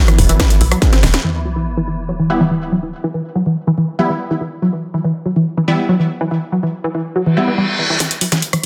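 A straight 4/4 pulse at 142 BPM drives this hypnotic, industrial slice of peak-time techno in E minor, cut from a longer track. A distorted, up-front electronic kick and a techno kit of cracking snare, metallic hi-hats and rim click open the passage alongside a punchy sawtooth sequencer bass and a swarming, granular drone, most of them dropping out around 1.2 s after a short drum fill. A tight, detuned sequenced synth riff runs through the whole passage, its mellow pluck coloured by chorus, phaser, digital delay and sidechain pumping, and a filter sweep works on it over a held E minor chord. A sub drop marks that change, and from 2.3 s an aggressive, thick rave stab cuts in with bright unison saws and a moving notch. A reverse cymbal, a riser and a returning drum fill build toward the cut, all under light reverb in a dense, heavily limited master.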